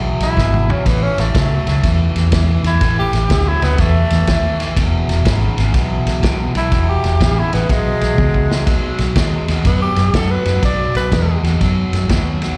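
An overdriven semi-hollow guitar riff with slapback echo and a round, foam-muted electric bass sitting up front open this laid-back, soulful electric blues shuffle, joined at 0.2 seconds by a dark-cymbaled vintage drum kit with a punchy kick, which adds fills at 0.4 and 8.2 seconds, while a breathy, intimate tenor saxophone solos in a jazz style with vibrato, plate reverb and slapback, all heard as a live gig through the venue's PA in a recital hall's reverb.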